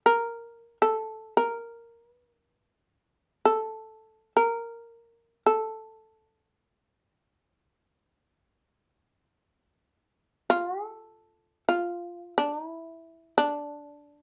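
A lone shamisen opens this excerpt of Japanese chamber music, its plectrum-plucked notes sounding mellow yet percussive, with a buzzing, powerful edge placed up front. Moving in free time within a narrow middle register, the solitary, austere line sits in a moderate small-room reverb. From 12.2 seconds the playing slows until it ends at 14.2 seconds.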